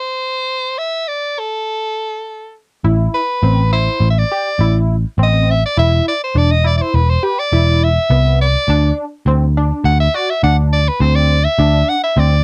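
Dry and close, this home cassette recording catches a short stretch of driving, tense progressive instrumental music in 5/4 at 103 BPM, set in A dorian. An edgy, forceful soprano saxophone with vibrato and a smooth top opens alone over a stop, its tone carrying cassette-tape grit, before a round, foam-muted picked electric bass and a tight, nasal sequenced synth enter at 2.8 seconds. The synth spins detuned sawtooth and pulse-wave arpeggios with a quick filter pluck, thickened by chorus and tape coloring, while the dark, amped bass sits up front beside the punchy saxophone solo over chords moving from Am to E5 and a rootless D7.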